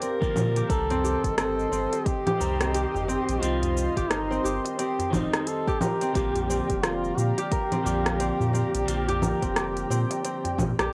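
A swung, hypnotic groove opens this organic downtempo excerpt: an up-front electronic kit of congas, smooth hi-hat, rim click and shaker carries a tape-softened sheen, while a deep, overdriven electronic kick, layered and re-recorded in a large room, joins at 0.2 seconds. A round sine sub bass with a fast attack enters at 0.4 seconds, alongside a very quiet darbuka, close and dry, its clay shell and natural skin struck with hard hands. Over this, a mellow duduk sings the folk-style solo melody with vibrato, scooped notes and a smooth top, trailed by analog delay and plate reverb. A fingerpicked concert harp rings out arpeggios, and a dark, clean picked electric guitar adds accompaniment with sidechain pumping and delay. Behind them, a sawtooth-and-triangle analog pad, detuned and chorused with a sub octave, a slow attack and a long release, holds sustained chords in the background, pumping as the harmony moves from Gm7 to Cm and back to Gm7. 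The home cassette recording lends the whole a soft, intimate haze in a moderate studio room.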